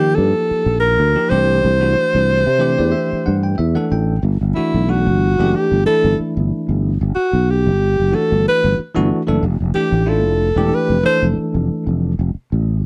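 Soaring and bright, this electric jazz fusion excerpt at 92 BPM in a lightly swung 4/4 sets a soft-attack, vibrato-rich alto saxophone on the melody over a bell-like tine electric piano, which adds a fill from 2.3 to 4.2 seconds, and a growly, punchy sustaining fretless electric bass bathed in lush chorus, with the saxophone taking a solo from 4.2 seconds as the chords move from Ebmaj9 and Cadd9 to Gmaj9 and Fmaj9 in a dry, close 1970s-style studio sound.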